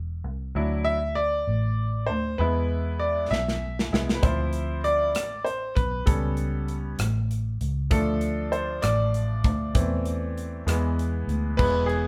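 A six-eight pop ballad at 65 BPM with an aching, melancholic mood, this excerpt features a bright grand piano, brilliant and intimate with audible action noise and long sustain, carrying a solo over a dark, round, foam-muted electric bass and an acoustic drum kit with a tight kick and medium-tuned snare that enters on a fill at 3.3 seconds, all played live in one room with moderate reverb through a progression moving from Dadd9 and E to Dm7, A7/C#, Dm and Am/E.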